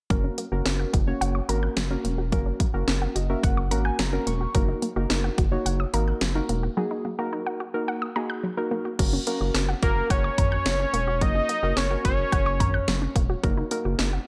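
Lightly reverberant, this cool, driving synth-pop passage is cut from a longer piece. A punchy, electronic house drum kit sits up front with a cracking snare, crash cymbal, hi-hat and toms, joined by a round analog bass that is deep, dark and sustained. Muted, felt-like synth keys with chorus supply soft, intimate accompaniment and step forward with a fill at 2.9 seconds. A lush, detuned unison pluck spins arpeggios through digital delay. After a break at 6.8 seconds, a fat analog lead with a sub octave, vibrato and delay enters at 9.8 seconds, carrying a mellow melody at the front of the mix.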